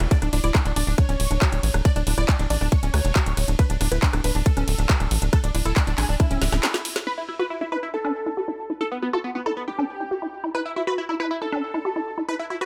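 A detuned supersaw stab carries the melody in this psychedelic trance excerpt, its punchy unison sawtooth tone run through phaser, delay and sidechain pumping for a driving pull at 138 BPM in E minor. Alongside it, a woody, wave-folded pluck with a mellow chorused edge plays a riff, pumping in step with the stab and trailing a digital delay. The opening seconds are a full drop: an up-front electronic kick thumps under a nasal, tightly plucked sequencer bass, while a garage kit adds handclaps, rim clicks, a woody snare and metallic hi-hats and ride. A drum fill arrives at 6.4 seconds and the bass drops out at 6.6 seconds for a brief break. From 7.1 seconds the drums and bass are gone, leaving the two synths as a filter sweep moves across the arpeggiated sound in a dry mix.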